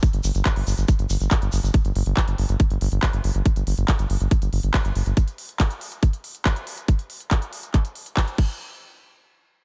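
Intense and driving, this psychedelic trance excerpt sets a tight, up-front electronic kick against a layered techno kit of crash, handclaps and smooth hats that sounds re-recorded in a small room, while a grainy egg shaker rattles only until 1.7 seconds and a round, deep, detuned analog bass sits low on G1 until 5.1 seconds.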